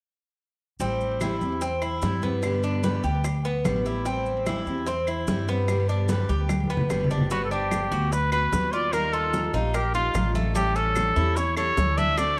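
A light studio reverb surrounds this sunny Cuban son and guajira excerpt, where a metallic, double-strung tres plays arpeggios up front through a tape echo over a thumpy, woody pizzicato upright bass and a bright picked steel-string acoustic guitar. Soft-handed congas sit distant in the background with round, dry bongos, grainy maracas and claves that enter at 1.2 seconds, and a drum fill at 6.5 seconds leads into the second section. At 7.3 seconds a punchy, vintage trumpet with light vibrato takes the solo melody up front, while the chords move from Gmaj7 through Ebadd9 to A7.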